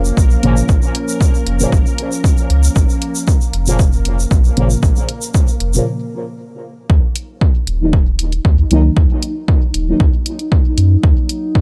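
Juicy, detuned polysynth stabs with resonant filter sweeps, chorus, phaser and dub echo lead this hypnotic, hazy dub techno cut at 116 BPM in Eb minor. Beneath them sit a punchy, up-front analog kick, a tape-warm electronic hi-hat, a deep, round sine sub bass and a warbling, nostalgic lo-fi pad with slow attack, with the bass, pad and stabs pumping to the sidechain. A grainy, bright egg shaker and a bubbling texture of random resonant filter steps drop out near 5.9 s for a brief break before the harmony moves from Bbm to Ebm at 6.9 s, all in a dry, gritty hardware sound wrapped in digital ambience.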